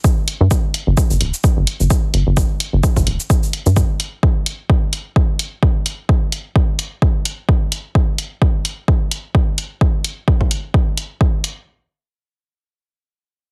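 A heavily compressed, radio-like sound with little reverb frames this cool, quirky minimal techno cut from a longer piece at 129 BPM in 4/4 with a 16th-note swing, where a punchy, overdriven analog kick and an overdriven electronic cabasa and hi-hat, both re-recorded in a large room, drive throughout while a rubbery, hollow square bass with a resonant filter pluck, tube saturation and sidechain pumping bounces between D1 and G2 only from 0.4 to 3.8 seconds.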